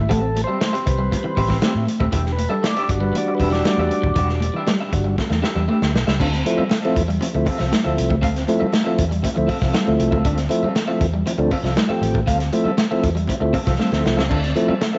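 Cool and driving, this funk excerpt rides a straight 4/4 groove. A mellow, round tonewheel organ sits forward in the mix with key click and a slow rotary speaker, playing stabs and taking a solo through the first 6.2 seconds over Am9 and Em7 before the harmony moves to Dm9. Two slightly broken-up electric guitars share a picked, compressed sound: one plays a riff with subtle chorus, while the other, set in the background, adds accompaniment through tremolo. A dark, foam-muted fingered bass gives a round, amped low end, and a crunchy breakbeat kit, saturated and gritty with a punchy kick, dark cymbals and a rolled-off top, sits up front and plays fills at 5.2 and 13.8 seconds. Very quiet, high-tuned congas ring with hard hands in a band-limited, vintage tone, and the recording carries echo chamber and small room reverb with its upper end dulled.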